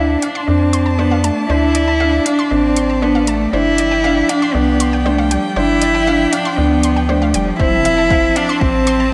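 Cinematic and melancholic, this piano and strings electronica excerpt at 118 BPM in D dorian builds over Dm7, G7sus4 and Fmaj7, led by an intimate, up-front cello melody with light vibrato and an airy sul tasto bow through a low-pass filter, over a rich string quartet's sustained chords with portamento. A felt-muted upright piano with audible action noise plays a soft, boxy riff, while a round, deep analog bass and bright, detuned analog pluck arpeggios both carry sidechain pumping, the pluck also treated with chorus, cassette tape and digital delay. An overdriven deep house kit with metallic hats and toms enters at 0.2 seconds, joined by a punchy electronic kick at 7.6 seconds, all set in a recital hall reverb.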